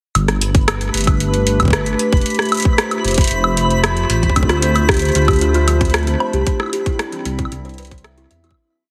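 Wistful and glitchy, this short IDM piece moves at 114 BPM in a straight 4/4 groove over a chord cycle of Gadd9, Fadd9, Dm7 and Cadd9. A tight, up-front electronic kick plays a broken pattern beside a booming analog drum machine whose metallic closed hats, high woodblock and rim clicks form an ever-changing, glitched beat treated with digital delay. Underneath, a dark, rumbling detuned saw bass carries a dub-style line, while a warbling, nostalgic lo-fi pad holds mellow sustained chords through chorus and its own reverb. A twinkling granular texture sustains a single high note with an octave-up shimmer, and at 4.4 s a woody, hollow kalimba enters with tape echo, its plucked 11-step loop drifting against the bar. The whole mix sits in light digital ambience with a heavily compressed, radio-like sound, and it fades out from 5.8 s to its end at 8.6 s.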